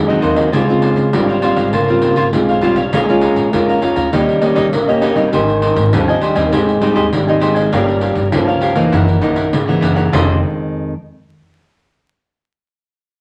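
Nostalgic and yearning, this excerpt from a longer samba-choro piece moves at 100 BPM in F minor, with a fingerpicked classical nylon-string guitar up front, a crisp picked cavaquinho, a woody pizzicato upright bass and a jingly, distant pandeiro played with hard hands. A dark, breathy trombone with light vibrato and a soft attack carries an intimate, whispered jazz-style second line through chords such as Dbmaj7#11, Bbm7 and Gb13, arriving on Fm7 at 10.1 s. A wet club reverb and vinyl crackle colour the sound, and the guitar rings on alone until 10.9 s after the other parts stop.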